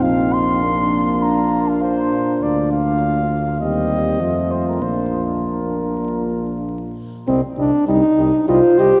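A dark trumpet carries the melody between Bb4 and C6, with a light vibrato and a smooth top, setting a stately, triumphant tone for this classical brass quintet passage in Bb major at 99 BPM in a straight 4/4. A French horn with vibrato sits prominently in the accompaniment, its mellow tone moving between C4 and G4, while a euphonium adds a warm, lightly vibrato-touched layer further back. A flugelhorn traces a distant, roomy second line in the background, and a tuba with a soft attack anchors the bass between Bb1 and F2. The harmony moves from Bb through Bb/D, Cm/Eb and F7 before returning to Bb, then shifts to Cm as a new section begins at 7.3 seconds. Heavy cathedral reverb with a 4.5-second decay bathes the ensemble, and a layer of vinyl crackle adds an aged patina to this short passage cut from a longer piece, which lasts about 9.0 seconds.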